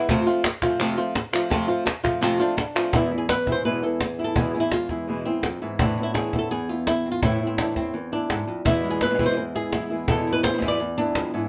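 A moderate studio reverb gives this short flamenco excerpt a close, present sound, with the guitar, cajon and palmas all placed up front. Passionate and intense, it moves at a brisk 168 BPM in a straight 4/4, set in E phrygian dominant. A fingerpicked acoustic flamenco guitar carries the melody across its full length, ranging from E2 to D5 with a warm tone, while a woody cajon struck with hard hands, its faint snares just audible, drives the rhythm from 0.1 seconds. Crisp palmas hand claps join only in the opening stretch, from 0.4 to 2.9 seconds, over an F chord. At 2.9 seconds a second fingerpicked flamenco guitar with fresh strings enters playing stabs beneath the melody, as the harmony moves through E, Amadd9 and back to E before the cut.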